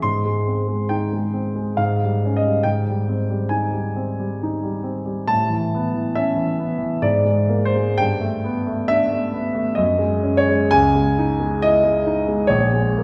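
A warm grand piano plays alone throughout this short passage of impressionist classical music, its tone natural and up front even as the whole performance is heard from further back in the room. The mood is hazy and luminous, set at about 67 BPM in 3/4 with uneven beats and free rubato, so the pulse drifts rather than marches. The harmony glides through richly colored chords, from G#maj7 and Fm9/Ab through Aadd9, suspended and add9 shadings, before settling on A#m7 near 12.5 seconds. The piano spans from deep bass notes up into the upper-middle register, and a wet scoring-stage reverb with a long tail blurs the sonorities into a gentle glow. Lasting 13 seconds, the fragment is cut from a longer piece.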